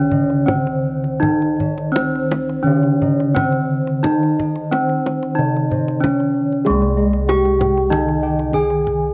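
An up-front bronze metallophone carries the melody in this short, hypnotic fragment of Javanese gamelan. Its wooden-mallet strikes sound vintage and band-limited, and a slapback echo trails each note. Beneath it, a second metallophone struck with padded disc mallets plays a mellow, soft accompaniment. A higher metallophone adds arpeggios with paired tuning that gives it shimmering beats and an airy quality. Bossed gongs form a round, beating bass in the middle of the mix, while a brighter set of bossed gongs spins its own arpeggios in the background, and a deep kendang enters close and dry at 0.1 s. The stately 4/4 music moves into a new section at 6.7 s, all set in a dry, close, small-room sound from a 1970s-style studio.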